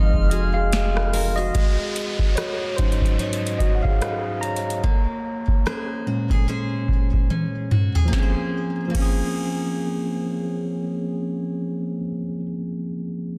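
A clean tine electric piano, heard through its built-in speakers and placed up front, carries this longing, moody contemporary R&B excerpt in Bb minor, taking a solo from 1.5 to 8.1 seconds over a slow 73 BPM groove with a swung sixteenth-note feel and a slightly flat tuning of A4 = 437 Hz. In the opening moments, a very quiet, woody clarinet-like synth lead with vibrato touches a single high note while a mellow, flute-like pad with chorus hovers in the background and a round, sine-toned 808-style bass sits deep and up front, before these three fall away. A full-bodied, dreadnought-style steel-string acoustic guitar picks delayed arpeggios, with audible finger squeak. A booming analog drum machine, re-recorded in a large room, sets a deep kick against a crisp snare, metallic hi-hats, rim clicks and crash, and a drum fill arrives at 7.3 seconds as an electronic downlifter sweeps beneath the solo. 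The chords move from Fm7 through Ab7sus4 to Bbm9, all held in light reverb within a dense, heavily limited modern master.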